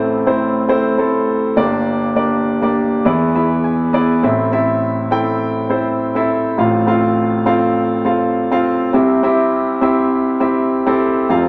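A solo concert grand piano sits up front with an open tone, deep bass and long sustain in this uplifting, hopeful pop excerpt, played with a light sixteenth-note swing. Its opening passage moves through Am, Gm and E7 before a piano fill at 3.3 s leads into a new section at 4.2 s, where the harmony settles through Am, F/A and C. A wet club reverb surrounds the piano until the excerpt ends at 11.5 s.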